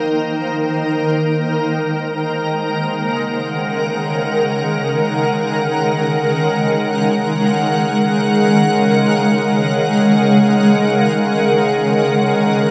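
A shimmering, ethereal pad opens this melancholic, serene ambient piece in free time and Eb dorian, joined for its first 1.3 seconds by a barely audible, dark, clean electric guitar playing fingered arpeggios. The up-front pad carries sustained chords through to 12.7 seconds, moving from Ebmadd9 to Ebm, its bright, detuned sine tone layered with an octave-up shimmer, granular texture, chorus and a slow attack and long release. A wet concert hall reverb surrounds the sound, and the passage is cut from a longer piece.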